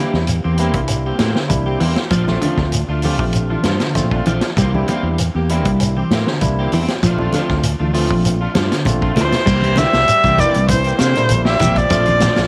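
Set in a small room with light reverb, this funky, hypnotic afrobeat excerpt at 98 BPM in C mixolydian rides a punchy vintage drum kit, a round fingered electric bass, grainy shekere and faint, bright congas under a barky, lightly overdriven tine electric piano, twangy clean electric guitar arpeggios with tremolo and tape echo, and slightly broken-up electric guitar stabs with ensemble chorus, before a drum fill at 8.9 s leads to a smooth, up-front erhu melody with vibrato and portamento and a whispered, breathy alto saxophone second line, both entering at 9.2 s.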